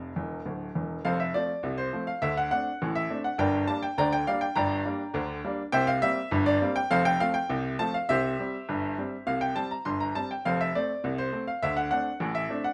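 Jaunty and playful, this short ragtime cut from a longer piece features a solo baby grand piano in a straight 2/4, its tone clear and natural with a short sustain, placed up front in a moderate studio reverb. A brief fill from 0.2 to 1.0 seconds leads into the main strain at 1.0 seconds, where the harmony moves through F, D5, Gm and C7. The piece runs across a range from D1 to C6 before cycling back to F and D5 at 10.5 and 11.6 seconds, shortly before it ends at 12.7 seconds.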